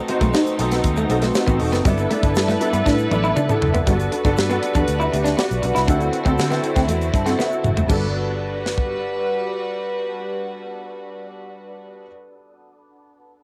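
Recorded at home on cassette in a booth with moderate ambience, this short, upbeat and glossy fragment of polished 1980s jazz-funk pop at 119 BPM in G major sets a clear, intimate baby grand piano with audible action noise and an ensemble chorus against floating, soft-attack bowed strings, a slightly broken-up, compressed electric guitar riff with lush chorus that runs until 8.0 s, a tight, dry funk drum kit with a cassette-tape tone and a fill at 2.9 s, a dark, round, foam-muted fingered bass, and a very quiet, grainy egg shaker, with the piano adding its own fill and sounding on until 13.4 s.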